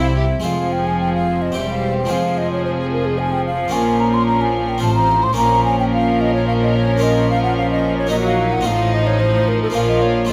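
A baroque-style classical concerto movement in a driving, stormy 3/4, this excerpt features a mellow, hollow concert flute leading the melody alongside a lush, distant violin section, while a focused chamber violin section carries a second line in the background, a brilliant Flemish-style harpsichord and a warm viola section fill the accompaniment, and bowed cello and double bass sections anchor the bass in a moderate recital-hall reverb captured with close, detailed microphones.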